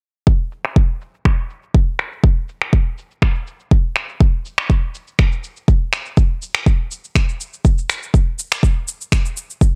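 An electronic kick drum and a layer of electronic shaker and finger snaps come in together at 0.3 seconds, setting a straight, driving afro house groove in four. The kick is deep and sits up front with a tape-warm character, carrying most of the weight in the mix. The shaker and snaps, also tape-warm and forward, sit quieter beneath it and pass through low-pass filtering that softens their top end. A filter sweep runs across the drums for the whole passage, even though it stays in a single section. A digital ambience surrounds the parts, and the mood is warm and propulsive until the drums stop at 9.7 seconds in this short cut from a longer track.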